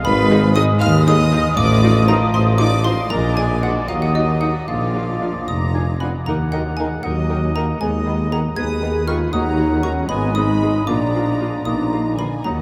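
A woody, dry xylophone carries the melody alongside a sul tasto chamber violin section in this sneaky, magical cinematic cue in Eb minor, moving in 6/8 at 78 dotted-quarter beats per minute and cut from a longer piece. A clear oboe, a rich, focused violin section and an airy, bright flute ensemble weave second lines, while a very quiet viola section and a distant bassoon fill in the accompaniment and a mellow French horn section holds sustained chords in the background. The cello section, an intense double bass section and a tuba anchor the bass, all set in a vast, echoing space.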